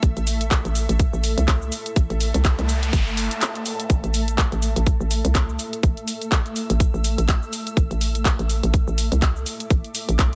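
Gritty and aggressive, this bass house clip from a longer piece moves at 124 BPM in A minor with a swung 16th-note feel, driven by a tight, layered electronic kick up front and a tape-warm garage kit of cabasa, handclaps and hi-hat. A hollow, punchy, knocking FM bass pumps against the sidechain beneath a detuned, blurred granular cloud pad that also pumps and carries its own reverb. It is all in a dry mix broken only by a noise sweep from 2.3 to 3.9 seconds that runs through a brief break starting at 3.4 seconds.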